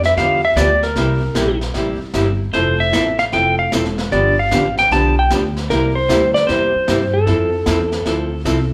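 A moderate large studio reverb wraps this short swinging passage, with the band heard playing together live in one room. It is cheerful country western swing at 152 BPM in 4/4, with a 66% swing on the eighth notes and a chord cycle in F major moving through G7, C7 and Fmaj7. Up front, a clean, dark lap steel guitar carries the melody between A4 and A5, played with slide and fingers, compressed and shaped by volume swells. A woody, thumpy upright bass with gut strings is plucked in the low register beneath it. A hollow-body jazz guitar joins at 0.2 seconds with clean, picked accompaniment. A vintage brush drum kit adds brushed snare and hi-hat with a warm, rolled-off top and a medium-tuned snare.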